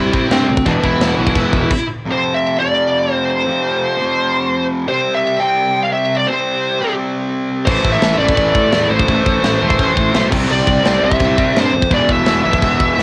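Straight 4/4 heavy metal with an epic, heavy mood, this cut from a longer piece opens with the full band together before a stop at 1.7 seconds leaves the high-gain lead guitar and a distorted electric guitar riff carrying on alone. The tight metal drum kit, up front in a big room, punches with a tight kick, a medium-tuned snare and bright crash and china cymbals, and it returns with a high-gain distorted guitar sitting in the background and the fuzz bass at 7.7 seconds. That fingered bass has a growly, overdriven tone, played direct and amped. The up-front lead guitar plays the melody in a high register with a picked, high-gain edge and a cassette-tape grit, while the foreground rhythm guitar keeps a bright, picked riff in the low range. The chords move from C through power chords on E, F and C to A minor, and the whole home cassette recording carries light reverb.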